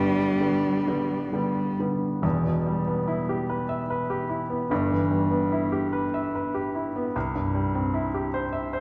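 A rich, bowed cello sings a tender, lyrical line on G3 over a warm baby grand piano in this fragment of a romantic classical duo, moving in a rubato 3/4 at 62-76 BPM in E minor, tuned to A4 = 436 Hz. The solo cello sits up front with expressive vibrato, a soft attack and portamento, but stops at 1.8 s. The natural-sounding, short-sustained piano carries on alone until 8.8 s, ranging from E1 to E5 through G, E minor and C harmonies, all within the lush reverb of a scoring stage.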